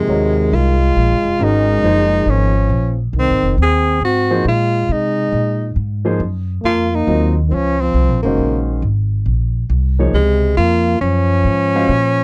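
A cool, searching swing jazz fragment opens with a smooth-topped tenor saxophone singing the melody up front with light vibrato, a breathy, whispered trombone playing a soft-edged second line, warm grand piano accompaniment and a woody, dark pizzicato upright bass, heard in a dry, close 1970s-style studio recording.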